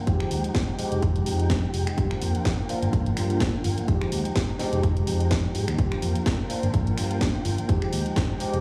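A punchy electronic kick and a house drum kit with a cracking snare, hi-hat and finger snaps set up a swung groove from 0.1 s, both layered and tape-warm as if re-recorded in a small room. This short excerpt of filtered disco house feels nostalgic and groovy, with a filter sweep running through the whole passage. A fingered electric bass, amped, warm and punchy, pumps through sidechain and a low-pass filter, while a clean tine electric piano played through a combo amp adds phased, pumping chords. Alongside them, a dark studio violin section holds smooth, bowed ensemble chords with expressive vibrato, also filtered and pumping, alternating between Fm9 and Gm7. Light reverb and a large studio space blend with small-room ambience, giving the mix the feel of a big sound system in a bare room, and the kick drops out at 8.3 s.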